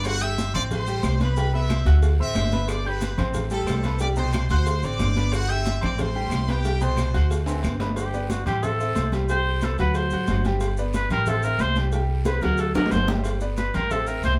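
Salsa at 182 BPM in G major, sunny and danceable, cut from a longer piece and played by a band live in one room with moderate studio reverb. A brilliant, tight trumpet section carries the melody with vibrato and a present, pop-style edge until 7.3 seconds, while a clear, smooth vintage grand piano with short sustain comps underneath over a cycle of G, Am7, Cmaj7 and D7 changes. Up front, a woody, dark upright bass with gut strings plays thumpy pizzicato lines low in the mix's foundation. The percussion sits in the background: bright, damped, high-tuned congas, tight cowbell and bongos played with soft hands, ringing metal-shell agogo bells and timbales heard from a distance, raspy guiro, grainy compressed maracas, and very quiet woody claves that stop at 7.8 seconds. After a drum fill, a clear trumpet takes a solo from 8.0 seconds, up front with light vibrato and scooped notes in a vintage pop style, with another fill arriving near the end.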